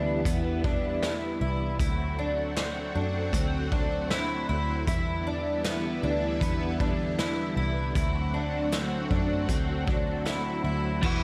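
A straight 4/4 pulse at 78 BPM carries this hazy, melancholic dream pop excerpt, cut from a longer piece, as it moves between Em7 and D7. A raw garage drum kit enters at 0.3 seconds with crash cymbal, hi-hat, boomy kick and a medium-tuned snare, its saturated, gritty sound mid-forward with a rolled-off top. Underneath, a vintage muted picked electric bass sits low, dark, round and amped. Up front, a fingerpicked twelve-string acoustic guitar plays full-bodied, octave-doubled arpeggios through analog chorus and delay, beside sustained violin chords from a string machine with a soft-attack sawtooth tone, bright and shimmering in ensemble chorus. A very quiet Celtic harp adds ringing texture high above. At 11.0 seconds a bright, compressed clean electric guitar comes in with tremolo and ensemble chorus, all set in light reverb and small room ambience.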